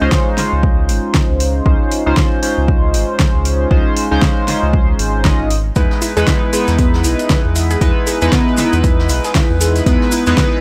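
Deep house at 117 BPM with a relaxed, sunny swing, this excerpt opens on glossy chorused polysynth stabs with cassette-tape grit and analog delay over a round, dark analog bass that pumps to a punchy overdriven electronic kick and a deep house kit of fat snare and metallic hats, moving from Dbmaj9 to Emaj7 at 5.8 s, where a warbling lo-fi pluck arpeggio with phaser, a distant brushed vintage kit and grainy maracas join in the background of a small room.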